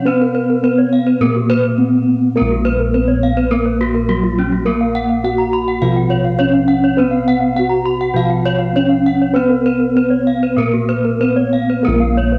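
This Balinese gamelan passage, cut from a longer piece, opens at once with bronze metallophones and bossed gongs sounding together in Bb pelog. The tempo sits between 93 and 104 BPM in a straight 4/4, and the mood is brilliant and hypnotic. The lead metallophone carries the melody between Gb3 and Gb4, struck with padded disc mallets for a mellow, soft tone, with a cassette-tape colour and the shimmering beats of paired tuning. Beneath it, a second metallophone plays a bright, horn-mallet accompaniment in the background, while the bossed gongs anchor the bass with a round, airy ring. Two more metallophones weave arpeggios: one is horn-struck, close-miked, dry and full, reaching up to Cb6+35c, and a wooden-mallet part joins at 0.2 s in the background, its paired tuning adding further beating shimmer. A moderate spring reverb and the home-cassette recording lend the whole a roomy glow until the music stops at 12.4 s.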